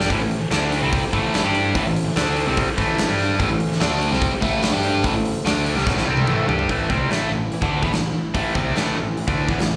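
Classic rock in A minor at 146 BPM, brooding and driving, heard as a live club gig through the venue's PA, where a bright, phaser-tinged overdriven guitar up front and a tight distorted guitar, both with slapback echo, play riffs over a fuzzy, overdriven picked bass and a punchy big rock drum kit, while a soft, flute-like tonewheel organ with key click and slow rotary speaker holds very quiet sustained chords until a drum fill at 5.9 s leads into a new section at 6.7 s, where a woody, boxy steel-string acoustic guitar with old strings enters in the background.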